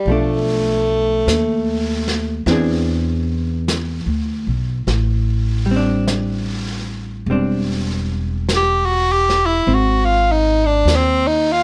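A slow swung pulse at 50 BPM in 4/4 carries this late-night, tender jazz ballad, cut from a longer piece, with the eighth notes lilting at a 67% swing. A breathy tenor saxophone sits up front and takes the melody as a solo throughout, its clear, present tone shaped by scooped notes as it moves between G3 and G4. Beneath it, a dark, clean hollow-body electric guitar supplies picked accompaniment. A woody upright bass, played pizzicato with steel strings and also placed up front, anchors the low end. A vintage drum kit played with brushes on a medium-tuned snare and hi-hat sits back in the mix with a muffled, lo-fi, small-room character and a rolled-off top. The harmony drifts from Bm7b5 to E7b13 and settles on Am7 before an Ab arrives at 9.7 seconds, all framed by light reverb and close, detailed microphones.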